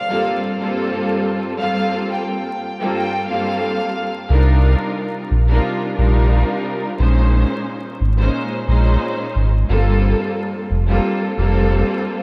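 Hip hop in G minor at 89 BPM with a swung 16th feel, this gritty, tough fragment of a longer piece opens with a distant, biting chamber violin section carrying the melody through a high-pass and low-pass filtered delay until 4.3 s, over a lush, vibrato-laden studio string section with a cassette-tape tint outlining Gm11, Cm11 and Bbm11 chords, while a deep, full sine sub bass with an octave enters up front at 4.3 s, all soaked in a dreamy cathedral reverb with vinyl crackle.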